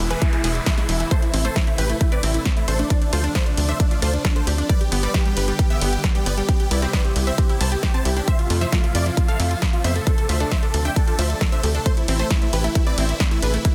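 A huge, euphoric supersaw lead carries the melody through this bittersweet, driving uplifting trance excerpt at 134 BPM in A minor, its bright detuned tone colored by phaser and tape echo and pumping against the overdriven, up-front electronic kick. A tight, punchy sequencer bass drives underneath, while a punchy analog drum machine adds hi-hat, ride cymbal and tape-toned snare, and in the background two lush detuned unison plucks, one playing a second line and one playing arpeggios from 0.1 seconds, sit beside a silky, string-like analog pad with ensemble chorus. A noise sweep opens the first 1.1 seconds before the harmony moves from Am through Dm7, G, Cmaj7 and Fmaj7, all within a dense, heavily limited modern master with little reverb.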